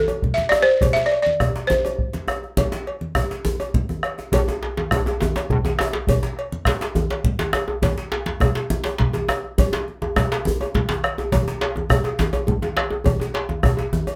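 A woody, buzzing balafon up front plays a C major pentatonic melody from 0.0 to 4.0 s over a festive, earthy West African drum ensemble in 12/8 at 137 BPM, where a deep, dark bombo, thick-skinned congas, a metallic cowbell and a cracking djembe with metal rattles drive the groove, a second tight, compressed and saturated djembe joins up front at 4.3 s, and brief drum fills punctuate the rhythm inside a reverberant small room.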